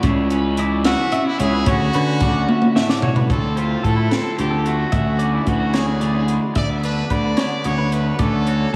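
Wistful and playful, this short math rock and midwest emo fragment sways in 6/8 at 74 BPM, with a twangy electric guitar comping in the background and a twelve-string electric guitar picking bright, compressed arpeggios touched by subtle chorus and tape echo over chords moving from C#m7 and Dmaj9 toward Fmaj7/D and Bm7/D. A growly, overdriven fuzz bass sits up front beside a compact, dry cocktail drum kit with a high-tuned snare and punchy kick, which plays a fill from 2.5 to 3.3 seconds. From 0.9 seconds a brilliant trumpet carries the melody with light vibrato and tape echo, sounding distant and roomy within a dreamy mix soaked in lush hall reverb.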